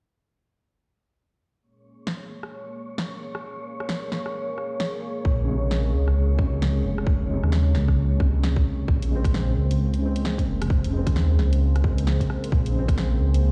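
Swung sixteenth-note garage drums, with hi-hat, rim click and a cracking snare, set up a ghostly, rainy future garage groove from 2.1 seconds over a moody, chorused analog pad that pumps against the beat, while an airy, wind-like noise texture breathes in the background until 8.9 seconds. At 5.2 seconds a tight, up-front electronic kick and a deep, rumbling detuned saw bass with tube saturation arrive together, joined by a soft, felt-muted upright piano carried on tape echo. The whole cut sounds as if played through a big sound system in a bare stone room, lending it a light, stony reverb.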